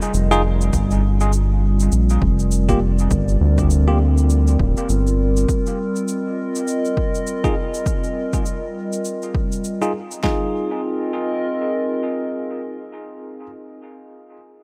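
A round, deep analog bass with tube saturation anchors this hazy, meditative ambient dub excerpt at 101 BPM in F dorian with a swung 16th feel until 5.5 s, under a warbling, nostalgic lo-fi pad with chorus, bell-like tine electric piano stabs through a low-pass filter and dub echo, a cabasa with dub echo, and an overdriven deep house kit with a punchy kick and fat snare that drops out at 10.4 s, all soaked in huge, dreamy reverb as the chords move from Fm7 through Gm7 and F7(no3) back to Fm7.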